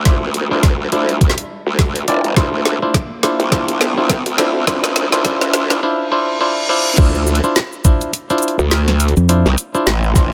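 Playful and gritty, this glitch hop excerpt builds over a Dm9 chord with a growling, wobbling growl bass, stringy clav stabs through sidechain pumping and tape echo, a thumpy electronic kick, a woody-snared electronic drum kit with bright hats playing a fill, and a background riser and reverse cymbal under a filter sweep until the drop at 7.0 seconds, where a dark, round fingered electric bass briefly sounds at 9.2 seconds.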